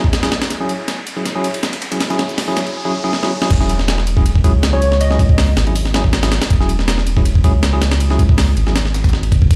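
Drum and bass with a jungle edge, this frenetic, atmospheric clip from a longer piece runs at 160 BPM in straight 4/4, opening on an E69 chord. A gritty, compressed breakbeat kit sits up front with a thumpy kick, medium-tuned snare, hi-hats, ride and crash under studio reverb, shadowed by a very quiet second overdriven break of hi-hat, snare and tambourine re-recorded in a small room. From the start a bell-like tine electric piano stabs through a low-pass filter and dub echo, and across the first 3.5 seconds an electronic riser builds in the background while the drums roll through fills. The drop lands at 3.5 seconds with a deep, round, soft dub sub bass pushed up front, and at 4.7 seconds a brief glassy wavetable pluck flickers in, crystalline and detuned, with chorus and dub echo. The mix sounds like a big sound system in a bare room, wrapped in large studio reverb and digital ambience.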